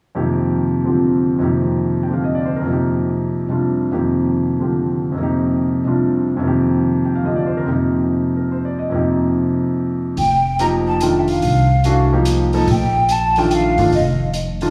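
This modal jazz piece in F mixolydian moves at 144 BPM in a swung 3/4, with an open, hypnotic mood, and is cut from a longer performance. A clear concert grand piano opens alone on an F9sus4 chord, its deep bass sitting up front as it provides accompaniment through the first section. At 10.2 seconds a breathy, mellow jazz flute takes the melody in a narrow upper range, its tongued, vibrato-laden tone sounding distant and hollow. An upright bass joins at the same moment, played pizzicato with a woody, thumpy character on steel strings and placed close in the mix. A dark, smooth hi-hat with a rolled-off top enters alongside them, sitting quietly in the background. The recording carries the ambience of a church or concert hall, with a wet recital hall reverb lending the performance a spacious glow.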